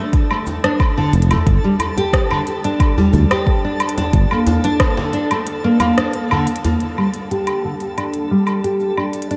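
This hypnotic organic downtempo excerpt opens with a fingerpicked classical nylon-string guitar playing arpeggios up front, its warm tone colored by analog chorus, a low-pass filter and analog delay, with finger squeak audible, over a twinkling, sparkling granular texture with an octave-up shimmer, slow attack and long release. A deep, up-front electronic kick and a produced electronic kit of crisp hi-hats, rim click, shaker and woodblock, re-recorded in a large room, set a straight groove, joined by a distant, medium-tuned djembe with metal rattles. At 1.1 seconds a bright, growly fretless electric bass enters with sustained notes and sidechain pumping, staying only briefly, while the harmony settles from F onto Gmadd9. The kick stops at 4.9 seconds, and at 6.8 seconds a filter sweep on the guitar opens a new section over Dsus4. The whole mix is dreamy and soaked in a huge ambient reverb.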